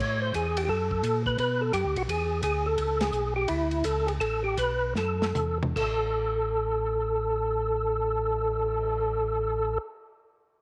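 A small room with light reverb frames this brief, swinging and bluesy soul jazz organ trio fragment, cut from a longer piece. An up-front, fat, percussive tonewheel organ with key click, chorus vibrato and a slow rotary speaker carries the melody over a round, dark tonewheel organ bass, while a dry, mid-forward acoustic kit with dark cymbals and a tight kick sits further back. The band hits an accent at 3.0 seconds as the groove slows down, and a drum fill from 5.0 to 5.8 seconds leads into a contrasting section.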